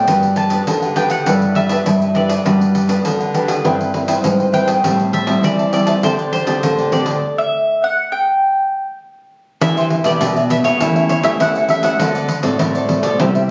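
This lively, joyful samba and choro moves at 101 BPM in a straight 4/4, opening in G major on gentle seventh chords before turning to E minor at 9.6 s. A round, mellow mandolin with the ringing shimmer of doubled strings carries the melody up front, sitting highest in the mix. A crisp picked cavaquinho and a full-bodied, fingerpicked classical nylon-string guitar fill out the harmony. A second nylon-string guitar plays a deep, warm bass line, with finger squeaks audible on both guitars. A jingly, vintage-sounding pandeiro struck with hard hands keeps the groove from 0.1 s. The band breaks into a stop from 7.2 s with the chords dropping out, then returns in the minor, and the moderate large-room reverb and phone-in-the-club capture give the whole a dusky, band-limited sheen as this cut from a longer piece ends.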